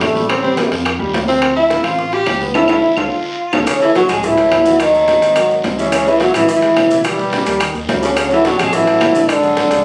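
A straight 4/4 groove at 214 BPM drives this fiery, sophisticated Afro-Cuban jazz excerpt, built on low-tuned congas in the background, tight high-tuned bongos, ringing metal-shell timbales, woody claves, a raspy guiro and grainy maracas that join at 3.7 s as the music settles into F# minor. Up front, a cup-muted trombone carries the melody in a veiled, breathy voice with scooped notes, while an edgy tenor saxophone with vibrato plays a second line and a clear upright piano accompanies in the background. A rubbery, hollow square-wave bass anchors the low end, the band hits an accent from 2.5 s, and the room-captured recording carries light reverb.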